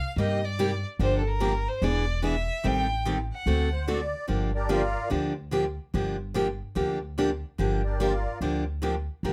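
Swung eighths at 146 BPM in 4/4 drive this virtuosic, bittersweet acoustic string swing piece in G minor, where a rich, smooth bowed violin with vibrato carries the melody until 3.9 seconds over bright picked steel-string guitar with audible finger squeak and a woody, thumpy pizzicato upright bass, before a reedy, shimmering musette accordion takes a solo from 4.3 seconds, heard through close, detailed microphones with light reverb.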